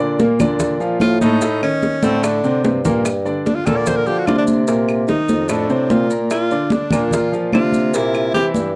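A clear, open baby grand piano with long sustain opens this danceable, sophisticated Afro-Cuban jazz passage alongside a warm bassoon holding down the bass line with light vibrato in a classical style, bright high-tuned congas and tight, compressed bongos sitting in the background. Grainy, mellow maracas and woody claves slip in almost immediately, adding texture to the straight, even groove. At 1.0 seconds a close-miked tenor saxophone comes up front for a jazz-style solo, its tone clear with vibrato and a soft attack. A short drum fill around 2.6 seconds leads into a darker, minor-leaning turn in the harmony, where seventh chords and an added-ninth colour give the progression a polished, sophisticated feel. The dry, close recording has the character of a small 1970s studio with a touch of small-room reverb, and the passage is cut from a longer piece.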